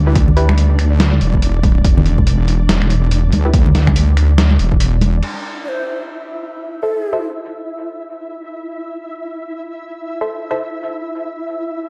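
Dark and brooding, this deep dubstep fragment, cut from a longer piece, moves with a swung, half-time feel. A heavy, saturated wobble bass sits up front for the opening 5.2 seconds, detuned and sawtooth-edged with chorus, joined by a punchy, layered electronic kick and a muffled, tape-toned sampler-style kit of snare, hi-hat, finger snaps and crash cymbal, both re-recorded in a small room. Bright, high-tuned congas played with hard hands sit in the background under dub echo, while a flickering, granular texture with its own reverb glimmers through the full length. Muted, mellow chord stabs with a filter pluck, chorus and dub echo punctuate the track at scattered moments, and after a short break at 4.8 seconds the low end falls away. From 5.6 seconds a breathy, end-blown ney with vibrato and tongued notes carries a brief close-miked melody, trailed by dub echo, before the grainy texture carries the piece out at 11.9 seconds.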